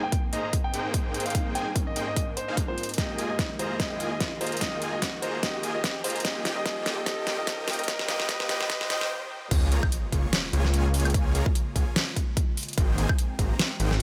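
Wrapped in light reverb and a digital ambience, this emotional, lush future bass excerpt moves in a swung, half-time feel, with a clear, intimate grand piano carrying the melody over a soft, round pluck in the background, a very quiet, airy and breathy pad, and huge detuned supersaw chords that pump and pass through a low-pass filter. A build-up with a filter sweep, a rising effect and a fill from the overdriven dubstep kit, with its deep snare, metallic hats, crash and woodblock, drives over a punchy, up-front electronic kick through Abmaj9, Fm11 and Eb13 until the piano and pluck stop at 9.1 seconds. At 9.5 seconds the drop hits with a sub drop impact and a thick, chorused, detuned saw bass up front over a Db6 chord before the harmony returns to Abmaj9.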